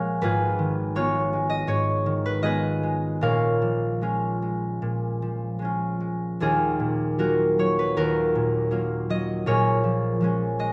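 Gentle and wistful, this short classical excerpt for solo concert harp unfolds in Eb minor at a loose, rubato 74-84 BPM in 4/4, tuned to A4 = 441 Hz. The fingerpicked harp sits up front with a warm, ringing acoustic tone, spanning Eb1 to Ab5 as it moves through Abm6, Bbm7 and Ebmadd9 before returning to Bbm7 near 9.5 seconds. A wet recital hall reverb with a 1.5-second decay surrounds the playing.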